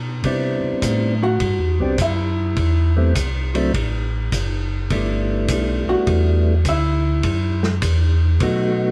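A swung 4/4 groove at 103 BPM, with eighth notes at 67% swing, drives this short, greasy soul jazz organ trio cut. A mellow tonewheel organ carries the bass line from F#1 to C3, its round tone marked by vibrato, key click and a slow rotary speaker. A second tonewheel organ, also up front, plays the melody between F#3 and G4 with third-harmonic percussion, slow rotary and plate reverb, over chords moving from Cmaj9 through F#m and G6 to Esus2. The soul drum kit sits lower in the mix, tight and mid-forward, with dark cymbals, a medium-tuned snare and a punchy kick. A vintage hollow-body jazz guitar, dark, clean, picked and compressed, comes in at 1.2 s in a featured solo role, stopping at 7.6 s. The whole trio is heard from further back in a club with a wet reverb.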